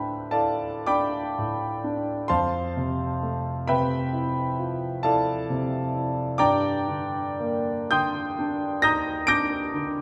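Mysterious and wistful, this short passage from a longer impressionist classical piece for solo grand piano unfolds in a slow, rubato 9/8, with the dotted-quarter pulse drifting between 34 and 46 BPM. The piano sounds clear and present, sitting up front with a long sustain as it spans from D2 to D7 and moves through Dm7, then Fmaj9 at 2.3 seconds and Gm at 6.4 seconds. A wet recital hall reverb, with a 1.7-second decay, surrounds the instrument.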